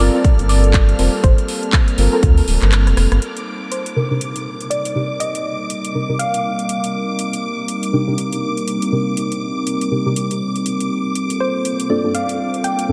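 Smooth and moody, this deep house excerpt moves at 121 BPM in C dorian with a swung sixteenth feel, drifting from Gm11 to Cm9 at 3.2 seconds and back to Gm11 at 11.2 seconds, all inside a dreamy, reverb-soaked cathedral space. A punchy, up-front electronic kick and a rubbery, hollow square bass anchor the opening before a drum fill and the bass's exit at 3.2 seconds, while the house kit's handclaps, metallic hats and rim clicks carry on under a smooth, warbling analog pad and deep, detuned chord stabs, both pumping against the beat and gaining filter sweeps. Above them, a shimmering string machine of violins hovers high, and a soft, round pluck with chorus and tape echo traces a gentle melody.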